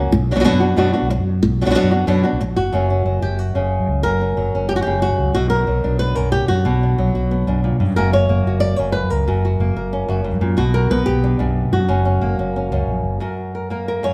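The fingerpicked flamenco guitar sits up front and carries the melody, its acoustic tone warm as it ranges from F#2 up to D5. Beneath it, a mellow fretless electric bass supplies a dark, round, amped low end. The feel is intense and mournful, moving at a brisk 183 BPM in a straight 4/4, with the harmony swinging between Bm and F# throughout. After a short opening passage, a new section begins at 2.7 seconds, and the bass drops out at 13.2 seconds while the guitar carries on alone until 14.1 seconds. The pair sound like a band playing live together in a stone room whose reverb lends the whole fragment a resonant, echoing air, tuned slightly high to A4 = 442 Hz.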